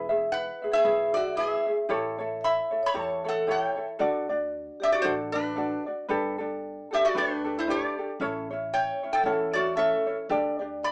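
Relaxed and languid, this Hawaiian excerpt swings gently at 114 BPM as a light, thumb-plucked ukulele and a woody, thumpy pizzicato upright bass start together, with a bright, nasal metal-body resonator slide guitar played with fingerpicks taking the melody up front from 0.3 s alongside a ringing vibraphone second line with medium mallets and slow motor vibrato, all heard as a band playing live in a wet small room with a small speaker sound over chords moving from E through A7, D and Gadd9 to A and Dsus4.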